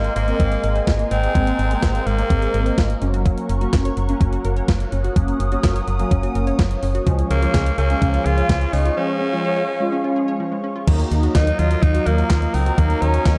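Synth-pop with a wistful yet bright mood, where a raspy, gritty tenor saxophone with analog delay carries the melody from 0.0 to 3.0 seconds and again from 7.3 seconds over mellow, brassy synth brass, a swirling phased analog pad, background analog pluck arpeggios, a punchy, round FM bass and a thumpy, up-front 12-bit drum machine with handclaps and crash, all bathed in dreamy plate reverb, with a break at 9.0 seconds before the chords move to Ebm.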